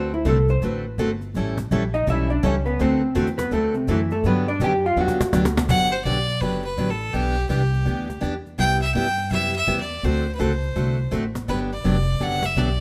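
Playful and down-home, this western swing country clip moves at 166 BPM in G major with a swung eighth-note feel. It opens with a dark, clean vintage hollow-body jazz guitar taking a solo up front, backed by a picked steel-string acoustic guitar, a woody, thumpy pizzicato upright bass and a snappy cajon played with soft hands that enters at 0.3 seconds. The cajon's fill closes the opening section, and at 5.7 seconds the guitar solo gives way to a clear, biting fiddle carrying the melody with light vibrato and an airy bow, close and earthy. Underneath, the chords move from D7 and A7 toward Gmaj7, then through Em7 and Cmaj7 before returning home. Light reverb gives the band an intimate feel, and the clip ends as it is cut from a longer piece.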